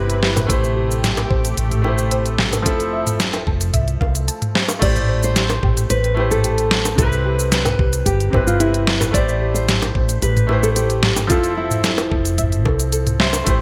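Warm and wistful, this sunset chillout passage, cut from a longer piece, moves at 111 BPM in a straight 4/4 in A minor, cycling through Am7, Fmaj7 and Cmaj7. A clear, open baby grand piano carries the accompaniment through a digital delay, while a soft, round pluck sits in the background playing arpeggios with ensemble chorus and delay. At the opening, a lush, detuned unison pad holds sustained chords with chorus and phaser until 4.8 seconds, when it drops out and a nylon-string classical guitar enters with the melody, treated with delay. Underneath, a woody fretless electric bass sounds dark and hollow-bodied, and the groove comes from an up-front smooth R&B kit with a deep snare, silky hats, cabasa, crash and toms, joined by a knocking, tape-toned electronic kick and tight, high-tuned bongos tucked into a small room. The whole mix has a bright 1980s-style digital sheen and a moderate plate reverb.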